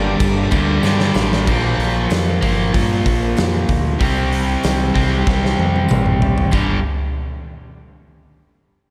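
Classic rock in G minor at 95 BPM with a brooding, driving feel, this short excerpt opens on a brief burst of bright, shouting tonewheel organ through a slow rotary speaker and a very quiet sludgy, double-tracked guitar, both gone by 1.4 seconds, while a crunchy up-front guitar and a hollow-body guitar with slapback echo carry the riff over growling overdriven fingered bass, a big rock kit in a bright stone room with drum fills at 0.8 and 5.3 seconds, and a faint jingly tambourine, the chords moving from Gm through Bb5 and C5 to G5.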